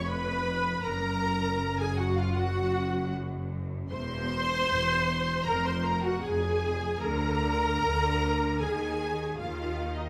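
Rubato phrasing in a slow 4/4 gives this serene, tender romantic movement for string orchestra a gently breathing pulse, its harmony drifting from a rootless Db7/F through Gb, C/E, Fm and Bb/D before the chords fall away at 8.6 seconds. A bright, intense violin section carries the melody from a distance while a focused second violin line sits in the background, lush, even violas stand up front with the accompaniment, and rich cellos join smooth-topped double basses on the bass. A wet recital hall reverb wraps this short excerpt from a longer piece in a spacious glow.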